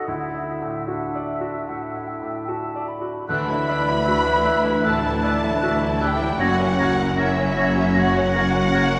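A bright, brilliant baby grand piano plays the accompaniment of this hopeful, moving orchestral film cue, joined from the start by a hollow silver flute, a warm clarinet and a distant oboe playing second lines over ringing, very quiet concert harp arpeggios, with a free rubato feel. At 3.3 s the strings arrive: a lush violin section carries the expressive melody in the background with a darker, distant violin line above it, a very quiet viola section and mellow French horns hold the middle, and rich cello and double bass sections anchor the bass. The harmony moves from a Dadd9 chord to F# at 6.4 s, and a long church reverb gives this short passage a spacious, hall-like bloom.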